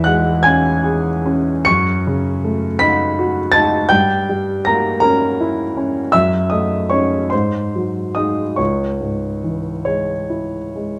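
Wistful and mournful, this romantic classical nocturne fragment for solo grand piano unfolds in a rubato 12/8 lilt across a range from C#2 to C#7, its warm, intimate, natural tone sitting up front with audible action noise, tuned slightly low to A4 = 437 Hz and wrapped in a moderate recital-hall reverb within a dark production.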